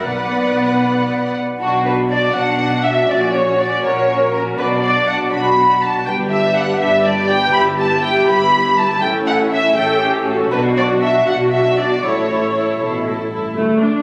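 Captured on a phone in the room, this string orchestra recording sits in a wet scoring-stage reverb, and its muted sections carry a veiled, dark cast. It is a quick classical-period movement in B minor, in a straight 6/8 at 80 dotted-quarter beats per minute, lively and graceful in mood. Muted violins carry the melody up front with a lush, vibrato-rich tone, a second violin section adds a line beneath them, and muted violas fill in the accompaniment with a soft attack. The cellos sit in the background with a smooth top, while the bowed double basses anchor the low end with a dark sound. The harmony moves from Bm through F#/A#, G and A, and the lead violins stop at 12.8 s while the violas and double basses play on until 14.0 s, where this passage from a longer piece is cut off.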